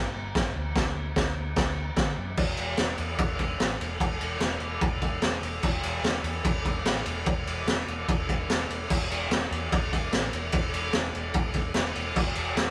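Garage rock with a gritty, menacing mood, caught mid-performance in a rough rehearsal-room recording with light reverb. A dark, round picked electric bass opens at 0.0 s with tube saturation, and a raw acoustic drum kit joins at 0.4 s, sitting up front and mid-forward with a boomy kick, medium-tuned snare, crash and ride cymbals, and a saturated, rolled-off top. The bass sits well beneath the drums, and the arrangement moves into a new section at 2.4 s that carries through to the cut.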